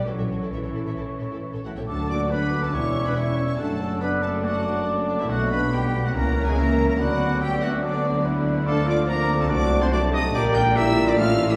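A dramatic, fast romantic orchestral movement in D major at 141 BPM, this 11.6-second passage from a longer piece feels urgent and stormy. The violins carry the lush, focused melody with vibrato, while a very quiet second violin line adds support and a very quiet viola section and a mellow bassoon fill the accompaniment. Up front, the double basses give a rich, smooth low end, joined by the cellos in the background. A crisp, pure flute, a mellow clarinet and a cor anglais weave second lines in the background, over soft-attacked sustained chords from a tight French horn section. A vintage-toned trumpet enters with stabs at 1.7 seconds and a very quiet trombone section adds sustained chords from 1.9 seconds, as the harmony darkens from D major through diminished chords and Bm7 toward Dm and Gm/Bb, all set in a wet recital hall reverb.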